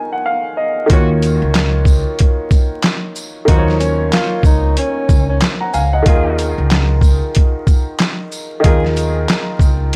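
Swung sixteenths drive a dark, gritty boom-bap groove, as the polished upright piano opens alone before compressed, pitched-down sampler drums with a thumpy kick, growly pizzicato upright bass and smooth jazz horn stabs with analog delay arrive at 0.9 seconds, joined by a jingly, distant tambourine. From 3.5 to 5.4 seconds a breathy tenor saxophone offers a whispered, intimate phrase with vibrato and scooped notes, sitting distant and roomy behind the up-front piano. The dry mix carries a small-room ambience and vinyl crackle, with the piano tinted by cassette tape.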